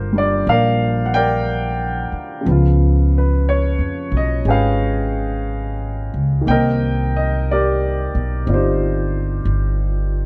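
A plucked, woody upright bass with steel strings sits up front, anchoring this intimate, tender jazz ballad at a slow 60 BPM in a swung 4/4. Close beside it, a baby grand piano accompanies with an open, long-sustaining tone, moving from Gm7 to Db7#11 at 2.4 seconds and settling on Cm9 at 6.5 seconds. The dry, dark, warm production gives this short passage, cut from a longer piece, a close, personal feel.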